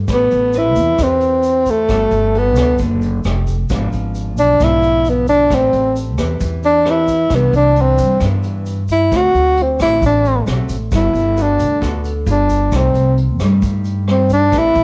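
This breezy, sophisticated bossa nova snippet has the feel of a home cassette recording, set in a small room with light reverb. Up front, a breathy tenor saxophone carries the melody as a solo across the whole passage, its soft attack, light vibrato and close-miked, whispered tone giving it an intimate, mellow jazz character with a cassette-tape tint. Beside it, a pizzicato upright bass with gut strings sounds woody and thumpy, while a fingerpicked nylon-string guitar sits in the background with a full-bodied, classical tone, also coloured by tape. A vintage kit played with brushes stays distant and roomy, offering a tight kick, hi-hat and rim click with a rolled-off top and cassette grain, and a grainy, bright egg shaker lingers far back in a larger space. The harmony moves through lush jazz chords such as Am9, Gmaj9, E7b9/G#, Cmaj9 and D7, closing on G7b9 at 12.3 seconds and Cm6 at 12.7 seconds before the cut at 14.8 seconds.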